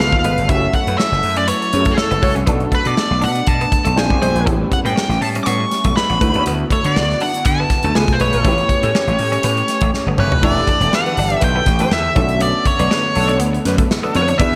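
A lush hall reverb and a big arena sound frame this glossy, breezy stretch of polished 1980s jazz-funk pop, which carries a gentle swing on the sixteenths. Up front, a nasal, overdriven lead guitar with a parked wah carries the melody through slapback echo, reaching as high as D6. A modern studio drum kit with a medium-tuned snare and a punchy kick sits forward beside a gritty, bright slap bass, and a drum fill at 9.9 seconds leads into the second section at 10.4 seconds. Further back, a mellow horn section plays a second line in octave doubling with light vibrato, a baby grand piano with short sustain provides accompaniment, and a twangy, compressed twelve-string electric guitar adds a riff from 0.2 seconds. A smooth, detuned sawtooth analog pad with a soft attack and chorus holds sustained chords through rich harmonies such as C#7b13, Bm7 and Em11.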